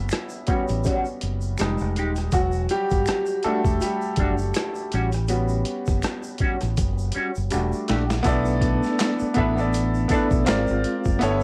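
Sultry and soulful, this neo-soul R&B excerpt moves at 81 BPM in E dorian with a swung sixteenth feel, its clear, worn grand piano taking a solo over rich extended chords for the first 8.3 seconds while a round, up-front fingered bass and a gritty, pitched-down boom bap kit with a thumpy kick, high-tuned snare, handclaps and rim clicks hold the groove, topped by a drum fill from 6.8 seconds. A bright, twangy electric guitar through a small old amp adds a slightly broken-up second line with wah and harmonic tremolo, and distant finger snaps and tube shaker sit far back. At 8.2 seconds a soft, flute-like tonewheel organ enters in the background with fast rotary speaker and chorus vibrato, all captured as a dry home recording on cassette.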